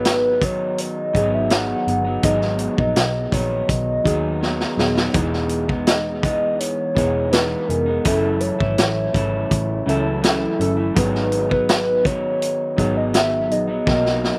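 A dry sound with little reverb frames this sunny, dreamy bedroom-pop excerpt at 82 BPM in a straight 4/4, moving through G#m7, Emaj7, F#m7 and back to G#m7 before landing on Bmaj7. A gritty, saturated garage drum kit sits up front with a punchy kick and high-tuned snare, adding fills at 4.4 and 13.9 seconds, while a round, foam-muted electric bass holds the low end. A slightly broken-up guitar through a small old amp with pitch drift and slapback echo, mellow decaying synth keys with chorus, and a detuned, vibrato-laden lead carrying the melody give the piece its warbling, nostalgic haze.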